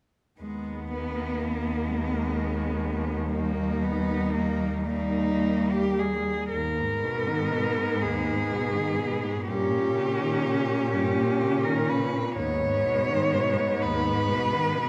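Bathed in the reverb of a wet scoring stage, this melancholic, yearning classical passage for four bowed cellos in a rubato 6/8 sets a rich, focused melody with a smooth top and vibrato over a soft-attacked second line, an expressive accompaniment and a bass voice, the three lower players all sliding with portamento.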